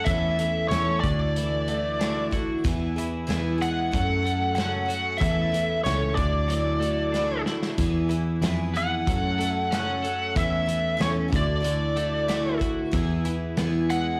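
Nostalgic and open-road in feel, this short cut from a longer folk rock and heartland rock piece moves at 93 BPM in a straight 4/4, cycling through A/E, Dadd9, E and F#m as if heard live through a club PA in a small room. A smooth, overdriven lead guitar sits up front carrying the melody with slapback echo and analog delay, over a shimmering, octave-doubled picked twelve-string acoustic with audible finger squeak and a twangy, compressed twelve-string electric riff bathed in lush chorus. A dark, foam-muted picked bass and a loose indie drum kit with a tight kick and medium-tuned snare anchor the groove, the drums breaking into a fill at 7.1 seconds.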